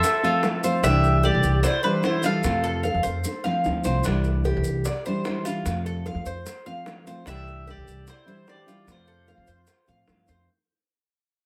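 Relaxed Cuban son and guajira at 149 BPM in 4/4, this fading fragment sets a round, picked mandolin melody and a pure, reedy concert flute second line with tape echo at 0.0 and again at 7.3 seconds, over fingerpicked nylon-string guitar with audible finger squeak, metallic Cuban tres arpeggios, a woody, thumpy pizzicato upright bass up front, grainy close maracas, and tight, high-tuned, distant bongos that add a fill at 3.2 seconds, all moving between F and Cadd9 in a moderate studio reverb.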